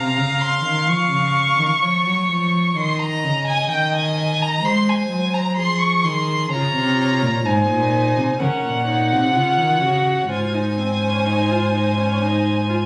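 A rich, expressive lead violin sits up front with vibrato and portamento, carrying the melody of this joyful, elegant baroque-style string-quartet fugue at 63 BPM in 4/4, heard as a section cut from a longer piece. A smooth, even second violin and an intimate, airy cello played sul tasto with light vibrato run beneath it from the start, and a focused, distant viola joins at 6.5 s as the music settles into Db major. Captured on a phone in a recital hall, the sound carries moderate room reverb plus club reverb and compression.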